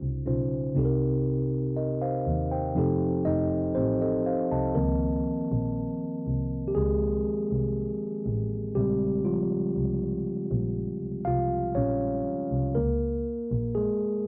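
A mellow tine electric piano and a dark, bowed double bass open this moody, sensual contemporary R&B excerpt together, moving slowly in a straight four. The electric piano sits clean and up front, its sound carrying the soft grain of cassette tape as it voices lush chords such as Dbmaj9, Cm7 and F9. Beneath it, a single bass player draws a woody, smooth-topped tone sul tasto with vibrato, holding down the low register. At 4.8 seconds the electric piano steps forward into a solo over Dbmaj9 and Bbm7 harmonies, while the bass continues until 13.7 seconds. The piano's solo carries on to the close at 14.3 seconds, ending on a bare Db5 chord. A light reverb and the intimate character of a home cassette recording give the piece a close, private feel.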